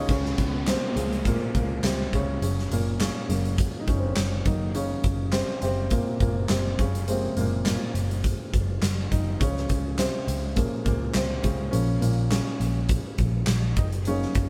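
Piano-driven pop with an anthemic, hopeful mood, cut from a longer piece and built on a swung 4/4 groove. A felt-muted upright piano sits up front and carries the whole passage from 0.1 seconds, its soft, mellow tone intimate and natural, with audible action noise and a short sustain. Beneath it, a vintage muted picked electric bass plays throughout, dark, amped and round in its foam-muted character. A huge arena drum kit enters at 0.1 seconds with a punchy kick, a medium-tuned snare, hi-hat and handclaps, sounding up front in a pumping hall-like room. An electronic downlifter sits in the background until 4.7 seconds, while the chords move from Db through Gb and Gbmaj7 to Bbm, closing on Ebm/Gb, all within light reverb that gives the feel of a band playing live in one room.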